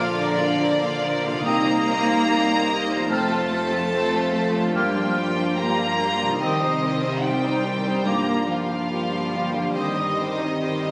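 Cinematic, emotional film score for orchestra, tender and moving, unfolding with a rubato feel in this brief excerpt. A warm violin section carries the melody with light vibrato and sul tasto bowing, joined by a clear, floating second violin line, a mellow flute group and a distant, roomy clarinet. Meanwhile, a rich viola section, smooth-topped French horn chords, ringing fingerpicked concert harp arpeggios, an intimate cello section and a dark double bass section fill out the harmony. Captured on a phone in a reverberant room, the sound is wet and compressed, and the progression settles onto Cm/G at 9.8 seconds.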